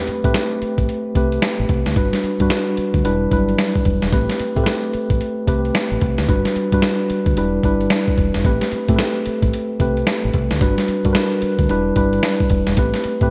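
Bright 1980s-style digital production with a moderate plate reverb gives this bouncy, slick new jack swing R&B cut a polished sheen, moving at 111 BPM in 4/4 with a 62% swing on the sixteenths in A dorian. An up-front, mellow tine electric piano enters at 0.0 s and cycles through Am9, Gmaj7 and Em7, joined at 0.1 s by a dark, round, punchy fingered electric bass with a foam-muted tone. A gritty, compressed sampler-style drum kit, up front and recorded in a large room, pairs a thumpy kick with a medium-tuned snare and hi-hat.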